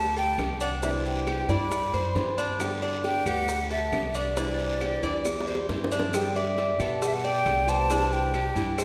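Bathed in the long, wet reverb of a church or concert hall, this relaxed, danceable Cuban son and guajira excerpt at 136 BPM in G major carries a breathy, hollow silver concert flute melody with vibrato over bright, metallic arpeggios from a Cuban tres, a thumpy pizzicato upright bass and fingerpicked flamenco guitar, while high-tuned bongos and cowbell, raspy guiro and grainy maracas sit in the background beside very quiet, woody claves, and a drum fill from 5.3 to 6.1 seconds leads into the second section.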